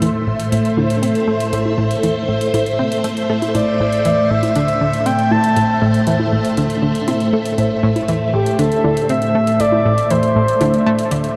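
Ambient, sequencer-driven space music in A minor at 119 BPM, this short cut from a longer piece feels cosmic and expansive, resting on a single A minor chord throughout. A swirling, vintage phased string machine holds sustained chords up front, its warbling ensemble chorus and moving notch giving the pad a bright shimmer. Beneath it, an analog pluck plays a round, sawtooth-and-square riff with a sub octave and fast attack, coloured by chorus, cassette tape and analog delay, while a filter sweep runs across the synth arpeggio sound for the whole passage. Electronic hi-hats with metallic hats and bongos, re-recorded in a large room and fed through analog delay, sit low in the mix, and a pulsing, tempo-synced gated texture of detuned unison voices hovers on E5 in the background. At 3.5 seconds a breathy, flute-like synth lead enters up front with a soft attack, carrying the melody between G4 and A5. 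The production is dark and warm, bathed in a huge, wet ambient reverb with a 7.4-second tail.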